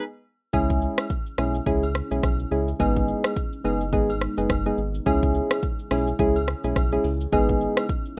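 Afrobeats at 106 BPM in C# minor, this short fragment of a longer piece has a smooth, mellow mood and a gentle swing on the sixteenth notes. After half a second of silence, the band enters together on a C#m chord, then alternates with G#m. Soft, round electric-piano-like synth keys sit up front with a chorus shimmer and decaying notes. The produced afro-pop drum kit is also forward, pairing a deep kick and metallic hi-hats with rim clicks and shaker, while a round, detuned analog bass holds the low end. Vintage, band-limited agogo bells tap in the background from the start. From 1.6 s a very quiet, moody ambient pad adds warbling, vintage sustained chords with a long release to this rough, dry home-demo mix.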